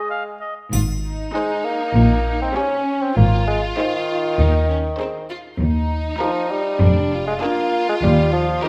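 A clear, up-front bassoon accompanies this playful, mischievous film cue in 4/4. It opens with a brief glimpse of smooth oboe before bowed strings enter at 0.7 s: distant double basses, focused, lush cellos and vibrato-rich background violins. A short touch of close, dry triangle sounds alongside them, and from 1.3 s an expressive, soft-attacked violin melody floats over background violas, the whole cut set in a moderate scoring-stage reverb.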